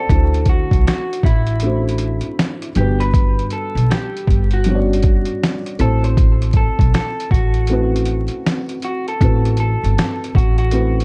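Gritty, overdriven sampler-style drums with a thumpy kick, fat snare, hi-hat and finger snaps sit up front in this melancholic, hazy lo-fi hip hop excerpt at 79 BPM with swung 16ths in A dorian, alongside a woody gut-string upright bass, a boxy, felt-muted upright piano moving through D9, Gmaj7 and Am69, and a slightly broken-up electric guitar melody through a small old amp with warbly pitch drift and analog delay, set in a dry, echo-heavy mix dusted with vinyl crackle.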